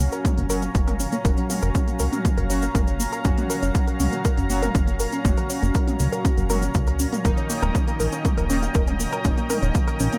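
A punchy, overdriven analog kick sits up front in this hypnotic, driving melodic techno excerpt at 120 BPM in 4/4, tuned to A4 = 444 Hz, with a plucky, dark sawtooth bass and a tight, detuned arpeggio sequence under a filter sweep, both carrying sidechain pumping. Bold, fat synth brass stabs with vibrato and delay and a lush, warbling unison pad hold the harmony on Gbmaj7 before it moves to Eb7 at 7.2 seconds, while a very quiet analog drone enters at 0.2 seconds. A layered techno kit with smooth hi-hats and toms and a grainy tube shaker fill out a dry, close mix.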